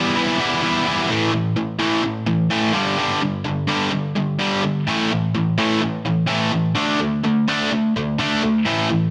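In a straight 4/4 at 127 BPM, this brooding, angsty rock clip, cut from a longer piece, features a lone picked, double-tracked electric guitar, bright and up front with overdrive, that moves from Em to a shift at 1.1 s through A5, G5, A5 and D5 across its range from G2 to E4, set in a moderate large-studio reverb with a dense, heavily limited modern master.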